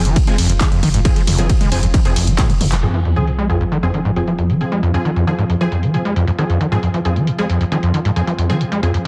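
A squelchy, gritty acid bass riff sits up front through this hypnotic, relentless stretch of driving peak-time techno at 135 BPM in F minor, its distorted sawtooth tone pumping against the beat and trailing digital delay. Over the opening seconds an overdriven electronic kick hits hard and heavy until 2.5 seconds, alongside a thick, saturated sub bass that runs to 2.8 seconds. A drum fill at 2.4 seconds leads into a band accent and then a sub drop impact at 2.8 seconds, where the sub falls away. A punchy, tape-warm analog drum machine carries on with handclaps, hi-hats, ride, crash and toms, its hats, cymbals and toms pumping under low-pass filtering. Aggressive, bright rave stabs built from detuned, wave-folded unison saws add chorus, reverb and delay, while a very quiet, moody pad drones in the background. The dense, heavily limited mix carries only light reverb, and the passage is cut from a longer piece.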